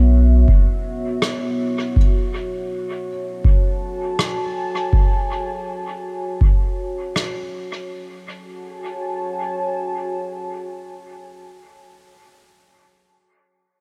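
A swung 81 BPM pulse in 4/4 carries this hazy, spacious ambient dub fragment in F# minor, where a round, mellow sub bass sounds only until 0.7 s, a deep analog kick re-recorded in a large room sits up front until 6.6 s, a distant, rolled-off rim click trails dub echo, and a dark, detuned, wave-folded pad with chorus and reverb sustains F#m7 before settling on F#m through to 11.6 s, over a small room ambience.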